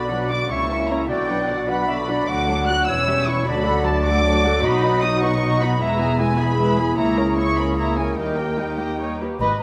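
A generous scoring-stage reverb wraps this short cut from a quick classical-period orchestral movement, lending the whole a spacious, enveloping sound. Set in a lilting 6/8, the mood is spirited and graceful, with the muted violins carrying the melody in a veiled, close, vibrato-rich voice while a second violin line sits softly in the background. Muted violas fill out the accompaniment, and the con sordino cellos and double basses anchor the bass with a dark, lush bowed tone. A distant, roomy clarinet adds a second line of its own, and a mellow horn section holds sustained chords behind the strings. Only at 9.4 seconds does a small flute group slip in with a brief, pure tongued note as the passage is cut off.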